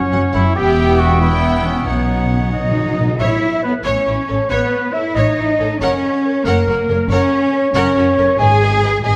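Set in a recital hall's reverberant bloom, this soaring, heroic cinematic passage moves at 92 BPM in a straight 6/8. Up front, lush cellos and rich double basses carry the bass with expressive vibrato, while a soft-attacked violin section sings the melody in the background, joined by a very quiet second violin line, smooth, even violas in accompaniment, and clear French horns holding sustained chords. A warm solo trumpet punctuates with stabs, a hollow flute and a distant clarinet weave second lines, a bright close-miked oboe sounds until 3.0 seconds, and round calf-headed timpani under soft mallets play a fill from 1.9 seconds.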